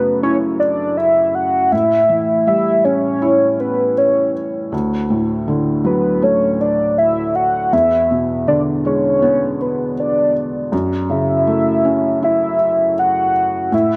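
Heartbroken and emotional, this slow 80 BPM pop excerpt in F# minor sets a velvety synth lead, dark and smooth with chorus and tremolo, singing the melody above a soft, felt-muted upright piano whose mellow, intimate accompaniment carries audible action noise, both up front in a lush hall reverb as the chords move from F#m7 through A7, D and E7 back to F#m7.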